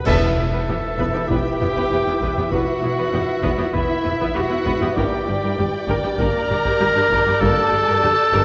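A worn, warbling cassette-tape sheen with pitch drift sits over a wet scoring-stage reverb in this tense, uneasy suspense cue in E minor at 98 BPM, where a bright, up-front solo clarinet carries a second line alongside a veiled bed of con sordino strings: muted violins holding the melody and another second line, with viola, cello and double bass sections underneath. A mellow French horn section and a flickering, grainy granular texture sustain chords in the background, while a taiko ensemble with heavy sticks drives the drums, and timpani plus dark clash cymbals with concert bass drum strike a band accent at the opening. A very quiet, lush high violin texture enters at 5.0 seconds as the harmony shifts from Em to Gm in this short passage cut from a longer piece.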